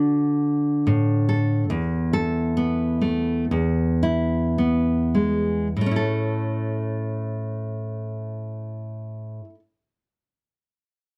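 Folk instrumental for solo nylon-string guitar, a short excerpt from a longer piece with a nostalgic, pastoral mood. The guitar is fingerpicked in a classical manner, its fresh strings giving a bright tone that sits up front in a dry, close studio sound with a 1970s character and a light touch of reverb. The time is loose and rubato, and the opening passage slows down over its first 5.7 seconds as the harmony moves from D through Esus4 to E. At 5.7 seconds a new section begins, settling on A. The guitar ranges from E2 to A4 and stops at 9.6 seconds.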